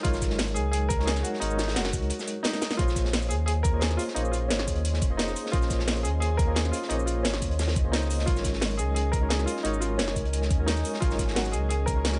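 A deep, full sub bass with an octave sits up front, its tube-saturated sine and triangle tone rolling under a melancholic liquid drum and bass groove at 175 BPM, where a baby grand piano carries the melody through dub echo and a worn, slightly out-of-tune tine electric piano adds tremolo-laden accompaniment through tape echo. The electronic kick knocks beneath a drum and bass kit of cracking snare, metallic hats and shaker, while a dark, gritty breakbeat kit with a rolled-off top sits in the background, and a drum fill arrives at 2.5 seconds. From 3.7 seconds an ethereal, airy pad with detuned unison and ensemble chorus drifts in behind the harmony as it moves from Ab9sus4 to Bbm11 and back, all in light, small-room ambience in this short excerpt from a longer piece.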